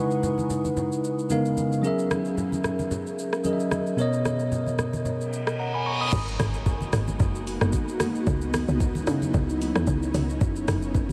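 A bright, bell-like tine electric piano opens this late-night, soulful amapiano excerpt over a gritty, sampled R&B drum kit of soft kick, hats, rim click, shaker and crash, with low-tuned congas in the background, until a reverse cymbal and impact usher in the drop at 6.1 seconds, where a punchy, percussive log drum bass enters and an ethereal, detuned pad with chorus, tremolo and sidechain pumping joins at 6.9 seconds, in a dreamy mix drenched in vast reverb.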